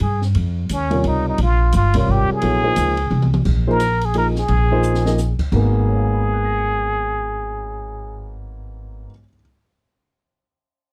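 A plunger-muted trumpet carries the melody up front with wah-wah, vibrato and scooped notes in this cool, hypnotic modal jazz piece in swung 3/4, over woody pizzicato upright bass, a grand piano with audible action noise that joins at 0.9 seconds, and an open acoustic drum kit with dark cymbals, a high-tuned snare, a boomy kick and brief fills that drops out at 5.6 seconds, captured in a dry, close 1970s-style studio sound.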